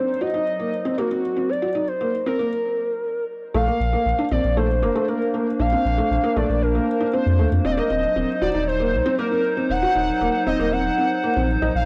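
A straight 4/4 pulse carries this wistful, intricate IDM piece, where a felt-muted upright piano plays mellow arpeggios with audible action noise and tape echo beneath an up-front, detuned lead melody with vibrato, portamento and chorus, while a dark square-and-triangle pad holds lo-fi chords through Ebm6 and Bbmaj9; after a break from 2.5 to 3.5 seconds, a round sine sub bass enters, and the whole mix sits on a dry, gritty cassette recording with light digital ambience.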